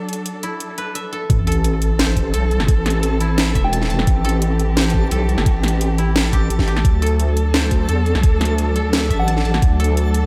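Half-time drum and bass in A dorian at 173 BPM, this tense, cinematic excerpt opens with a dark, bowed cello section holding sustained chords with a sidechain pumping, under a dry, woody koto playing arpeggios through tape echo, with a filter sweep on the koto over the first 1.3 seconds. The drum kit's cracking snare and bright hats, overdriven and set in studio reverb, run nearly throughout. At 1.3 seconds the drop lands: a knocking electronic kick and a deep, up-front wobble bass with chorus arrive together, marked by a very quiet sub drop as the impact. From 2.2 seconds a reversed, granular swelling texture sits dreamily in the background on a single high note. A soft, pure FM bell with chorus and diffuse ambient delay adds brief mellow touches, and the harmony moves from D to A minor and back to D, all within a light digital ambience.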